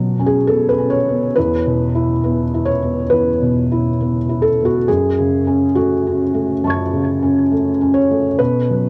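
A felt-muted upright piano plays alone through this short cut from a longer neoclassical minimalist piece, its tone soft, mellow and placed up front. The mood is intimate and wistful, with a rubato feel in 4/4 that lets the phrasing breathe. The piano reaches from E2 up to G#6, moving from Bsus2 to E5, then to F#madd9 at 4.9 seconds and settling on B5 at 8.4 seconds. A cassette tape character and an analog delay colour the instrument, lending it a homemade, natural grain. The moderate ambience of a booth and the tuning at A4 = 439 Hz add to its close, private quality.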